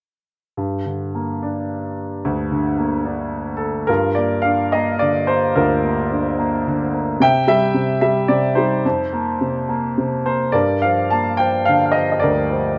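Moody and brooding, this short classical passage for solo piano unfolds in a lyrical, rubato triple metre, cut from a longer piece. A clear baby grand piano carries everything from 0.6 to 12.8 seconds, ranging from D2 up to A5, with an open tone and long sustain that lets notes ring. The instrument sits up front in the sound, wrapped in light reverb that adds a gentle sense of space. After an opening statement, a new section begins at 3.9 seconds and carries the music to its close. The harmony moves from G minor through Gm7, C and F7sus4 before settling back on Gm7, keeping the dark, introspective colour throughout.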